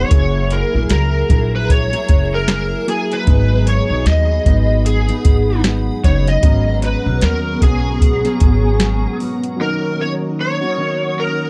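A mellow, hazy bedroom-pop clip in G# minor at 76 BPM with a swung 16th feel rests on a woody, thumpy pizzicato upright bass and a soft vintage rhythm box, its deep kick, crisp snare and metallic hats sitting up front. From the start, a bright, overdriven slide guitar carries the melody through ensemble chorus over a dark, clean electric guitar with lush chorus and vibrato, while warbling lo-fi synth keys with cassette-tape wobble and a cloudy, evolving granular pad stay in the background. The chords move from F#9 through G#m7 and G#m11, the bass drops out at 9.0 seconds and the drums at 9.6 seconds, leaving the guitars, keys and pad to ring over D#m7 in a dark, lightly reverberant mix.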